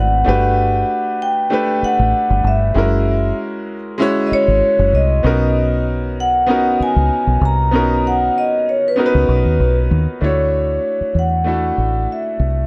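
Smooth and romantic, this lush 1970s-style soul excerpt moves at 96 BPM in 4/4 with a gentle sixteenth-note swing, centred in B major. A vibraphone played with medium hard mallets carries the melody throughout, its metallic, ringing tone heard with the motor off in a boxy small room and trailed by a slapback echo. Beneath it, a clear baby grand piano sits up front with the accompaniment, while a deep dub fingered electric bass, round, punchy and foam-muted, anchors the low end with a dark, direct amped sound. The harmony drifts from Gmaj9 to F#9 and settles on Bmaj7 before the passage shifts into a new section at 10.2 seconds on Dmaj9. Light reverb, a dark production and a faint mains hum give the recording its mellow vintage character.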